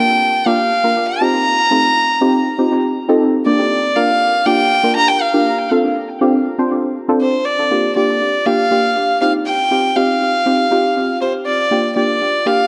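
Energetic and confident, this pop excerpt places a reedy, gut-string bowed violin in period style up front on the melody, its smooth top trailed by analog delay, over deep, mellow chord stabs with a dark, ring-modulated edge, chorus and delay, as the harmony circles through Gm7, Eb69 and Dm7 in an echo-heavy mix bathed in plate reverb with softened highs.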